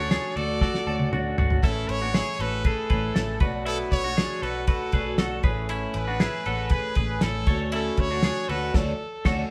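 Jangly indie pop with a nostalgic, breezy mood, cut from a longer piece: a brilliant, present trumpet sings the melody with vibrato and scooped notes over shimmering, octave-doubled fingerpicked twelve-string acoustic guitar and twangy, compressed arpeggios from a twelve-string electric guitar. Underneath, a vintage foam-muted fingered electric bass sounds round and punchy, while an up-front, cloth-damped drum kit with a fat snare, tight kick and dark cymbals plays a fill from 0.6 to 1.6 seconds as the chords move through Dmaj7, Amaj7 and Bm7. The band plays live together in a moderate stone room, closing on a band accent from 8.7 seconds.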